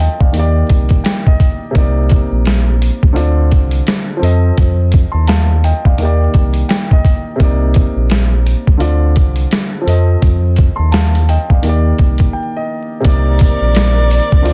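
Dense, heavily limited and dusted with vinyl crackle, this reflective yet tough boom-bap hip-hop excerpt at 85 BPM in C dorian rides a swung groove of gritty, pitched-down sampler drums with a thumpy kick and a round, deep analog bass up front, while a filtered grand piano cycles through Ebmaj7, Cm9, Dm7 and F7, and after a brief break at 12.3 seconds a breathy, whispered tenor saxophone with delay enters at 13.0 seconds alongside jingly sleigh bells, soon joined by lush bowed strings, both sitting in the background.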